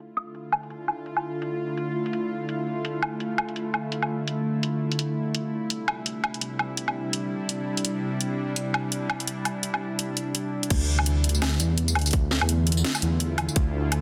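Half-time drum and bass with a cinematic, heavy mood, opening on a tense, string-like bowed drone and an overdriven kit of cracking snare and bright hats under a filter sweep, until the drop at 10.7 seconds brings in a deep, rumbling detuned saw bass and a tight electronic kick, all set in an echo-chamber reverb and a dense, heavily limited master.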